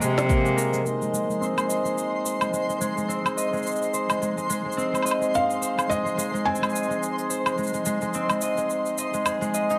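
A moderate echo-chamber reverb surrounds this playful, delicate folktronica excerpt in Ab major at 107 BPM, with a light swing on the sixteenths. Up front, a ringing, fingerpicked concert harp plays arpeggios through a filter sweep and tape echo, over breathing, reedy harmonium chords and a produced kit of shaker, woody snare and woodblock, while a nasal bowed cello bass sounds only for the first 0.8 seconds. A sparkling granular shimmer enters at 1.4 seconds, and a felt-muted upright piano, intimate with audible action noise, carries the melody from 5.4 seconds.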